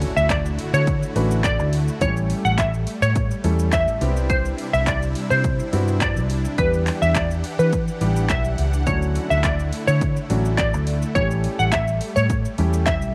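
Summery and euphoric, this dance-pop excerpt moves at 105 BPM in D major, its chords turning from Dmaj7 through A7, Cmaj7 and Em7. A glassy wavetable pluck carries the melody up front from 0.2 seconds with chorus and slapback echo. Beneath it sit a dark, foam-muted electric bass, a punchy analog drum machine of kick, handclaps, hi-hat and shaker, huge detuned supersaw chords and a natural baby grand piano, with the bass, supersaws and piano pumping from sidechain, while a very quiet electronic impact marks the opening 2 seconds in a dry mix.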